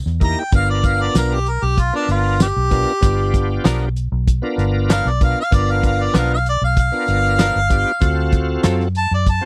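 A straight-eighth soul blues groove rolls along with gritty, rollicking energy, built on a cloth-damped drum kit with a fat snare, tight kick, hi-hat and tambourine, and a dark, round, foam-muted fingered electric bass sitting up front. Over it, a mellow harmonica takes a jazz-style solo with scooped notes and light vibrato, while a shouting, lightly overdriven tonewheel organ with key click, chorus vibrato and a slow rotary speaker fills out the chords. A twangy, compressed clean electric guitar recorded direct adds bright stabs from 3.6 seconds, all captured in a dry, close 1970s-style studio sound.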